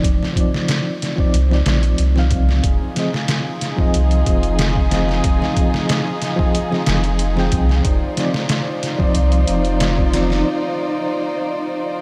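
Soaked in a huge ambient reverb, this dreamy, melancholic trip hop excerpt at 92 BPM in F dorian rides on a compressed, pitched-down sampler-style drum kit up front, with thumpy kick, medium-tuned snare and hi-hat. Beneath it sits a round, deep sine sub bass, and a reedy electric piano carries tremolo, 12-bit sampler grit and tape echo. At 2.6 seconds a dark, woody violin section enters with bowed, vibrato-laden sustained chords as the harmony moves from Cmadd9/F to Fm7 and back, and the drums, bass and piano fall away around 10.5 seconds, leaving the violins alone in a brief break.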